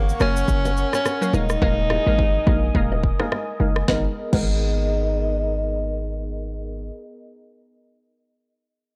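A dry, gritty recording with transformer saturation and a digital ambience frames this sultry, smooth afrobeats excerpt in G# minor at 106 BPM, swung on the sixteenths. An up-front breathy tenor saxophone sings a jazz-style solo with vibrato and scooped notes over a glassy, crystalline wavetable pluck with chorus, an airy pad that pumps under sidechain, and a fingerpicked nylon-string guitar riff set in the background that stops at 4.4 seconds. A punchy, heavy 808-style bass and an electronic afro-pop kit with a deep kick, woody snare, rim click, shaker and crash drive the groove through F#, D#sus4 and G#madd9, with a filter sweep running through the first 3.9 seconds.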